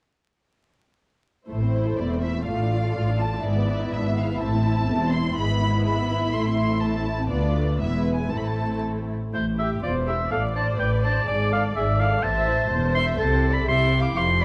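Close, detailed microphones, light reverb and vinyl crackle frame this urgent, restless classical-period orchestral movement in A minor at 124 BPM in 2/4 with a rubato feel, where muted violin sections carry a veiled melody and second line over lush viola accompaniment, a soft-attacked cello section and a dark double bass section, before a clear, roomy oboe joins at 9.3 s with its own second line, sitting up front.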